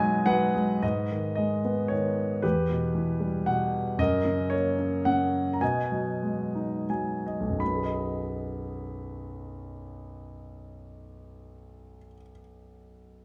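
A short piano flourish opens this fragment of a lyrical classical solo piece, leading at 0.8 seconds into a relaxed, unhurried theme in B major and 3/4 time. The concert grand sits up front with an intimate, smooth, vintage character, its deep bass reaching down to B1 and its melody rising as high as B5, with the soft clatter of the action clearly audible. The tempo moves freely between 80 and 118 BPM in a rubato feel, and the harmony passes from G#m through Emadd9 to F#; from 4.0 seconds, as F# arrives and the music settles back on B6, the music slows down. Another short fill arrives just before a new passage begins at 7.6 seconds, and the piece is cut off at 13.2 seconds. A moderate recital hall reverb surrounds the piano, giving the whole a warm, gentle glow.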